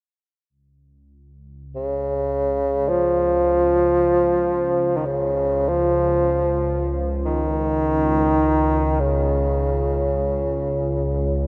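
Calm and peaceful, this excerpt of free-time world meditation music rests in Db major pentatonic, opening at 1.5 seconds with a deep, dark ambient pad holding a Db2 drone, its detuned sawtooth and sine layers given chorus and a slow, sustained bloom over a sub octave. At 1.8 seconds a mellow solo bassoon enters up front, singing a classical-style melody between Db3 and F3 with light vibrato and a smooth top. A huge, wet reverb with a 4.4-second tail surrounds the whole scene, lending it a spacious, hushed stillness.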